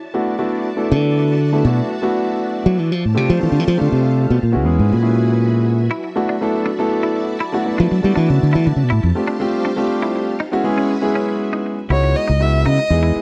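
Jazz in 6/8 at 80 BPM with a straight feel, this short excerpt feels nocturnal and driving, cut from a longer piece and captured as a dry, close 1970s-style studio recording in a small room. A growly, up-front fingered electric bass takes a solo over the opening 11.9 seconds, its bright, direct tone cutting through suspended ninth chords that shift among E9sus4, G9sus4 and F#9sus4. Beneath it, a clear grand piano plays intimate accompaniment with audible action noise, while a lush string machine holds sawtooth chords with a sub octave, slow attack and ensemble chorus. A clean, twangy electric guitar adds compressed, picked stabs in the background from 5.9 seconds, treated with analog chorus and slapback echo. At 11.9 seconds the harmony settles on C#m11 as the string machine stops and a single bowed violin enters with a soft-attack melody, full of vibrato and portamento and touched by its own slapback echo.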